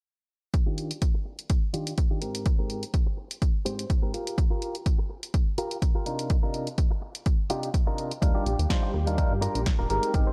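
A dry, gritty hardware recording of sensual, funky filtered disco house, cut from a longer piece, in which an up-front punchy kick and an analog drum machine's snare and pumping hi-hats drive a twangy, clean, direct-recorded electric guitar riff, bathed in spring reverb and a filter sweep over extended chords, until at 8.2 seconds a bell-like tine electric piano, a vintage string machine with phaser and ensemble chorus in the background, and a plucky, dark sawtooth bass join, each pumping beneath a low-pass filter.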